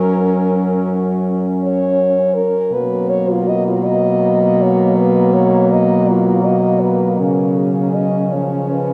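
A dark, soft-attacked French horn sings a tender, serene melody up front in this lyrical classical excerpt for horn quartet in F# major, moving in a slow, rubato 12/8 at 54 BPM, with a clear horn adding a vibrato-tinged second line, a mellow, distant horn carrying the accompaniment, and another mellow horn holding the bass, all set within the long, wet reverb of a cathedral-like hall as the harmony moves from F# to Bmaj7 at 2.7 seconds and on to C#.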